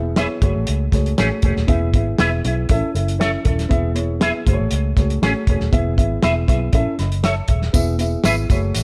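Uplifting and joyful, this brief clip of uptempo 1960s-style soul moves in a straight four-four groove, cut from a longer piece. A soul drum kit sits up front with a tight kick, a medium-tuned snare and hi-hat, its rolled-off top and pumping room giving the beat a snug, warm punch. Beneath it, a vintage muted fingered electric bass stays low and round, its dark, amped tone plugging the bottom, while a woody, boxy upright piano fills in mellow accompaniment close to the listener. An electric guitar adds clean, picked stabs with a twangy, scooped sound shaped by an envelope filter, thickened by ensemble chorus and tape echo. The chords run F#madd9, E, A and E, twice over, and a jingly tambourine joins only at 7.7 seconds, lifting the last moment inside a small room ambience.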